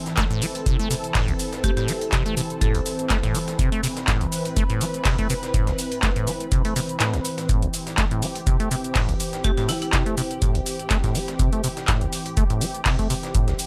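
Acid house at 123 BPM in A minor, driving and hypnotic, built on a dry, deep electronic kick up front that drops out briefly at 7.0 seconds, with a dry analog drum machine's handclaps, metallic hats and shaker alongside a very quiet, gritty sampler-style kit of hi-hat, shaker and snare, all with a light swing on the sixteenths. A squelchy, saturated sawtooth acid bass riff with resonant filter sweeps and digital delay drives the groove beneath a lush, detuned unison pad holding sustained chords through chorus, phaser and sidechain pumping. A woody, hard-mallet marimba melody with tape echo sits in the background, appearing at 1.6 and 9.4 seconds in this short cut from a longer piece, all under light reverb.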